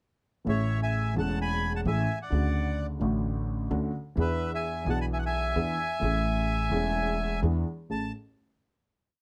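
A reedy, smooth bandoneon sits up front with a motif-built melody of sentence-like phrases, partly doubled in thirds, in this short, complete tango with an elegant, passionate, rubato feel. Beneath it, a dark, mellow, slightly detuned upright piano and a thumpy, gut-strung pizzicato upright bass with a woody tone both play the tango rhythm of uneven groups of three and two eighths, moving through Amaj7, Dmaj7 and E7 before settling on a final Amaj7 chord at 7.9 seconds. The close, detailed recording has little reverb.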